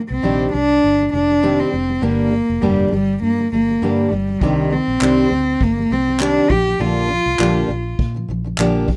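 A lightly swung 16th-note groove at 101 BPM in 4/4 carries this reflective, wistful acoustic pop excerpt in C minor, tuned slightly below standard pitch, with a fingerpicked dreadnought steel-string guitar and a round, foam-muted vintage electric bass underpinning the Cmadd9, Gm and Bb6 changes. Up front, a single close, intimate cello sings the melody with an airy sul tasto bow, soft attack and light vibrato until 8.0 s. A vintage brush kit with a punchy kick, handclaps and a rolled-off top enters at 4.4 s, all set in a moderate studio reverb with the rough feel of a home demo.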